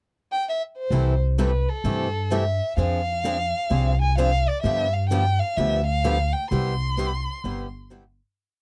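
Acoustic string swing in C major at 129 BPM, charming and lively, where a warm, bowed violin with vibrato and portamento enters on a pickup at 0.3 seconds to sing an expressive, motif-based melody up front. Beneath it, an upright bass plays a woody pizzicato two-beat root-and-fifth line, and a boxy, picked swing-style guitar plays short four-to-the-bar chords accented on two and four with audible finger squeak. A bright steel-string guitar picks a second rhythm part in the background through a chord cycle of C6, Fm6, G7 and Cmaj7, all in a dark production with light reverb that fades out from 6.5 seconds.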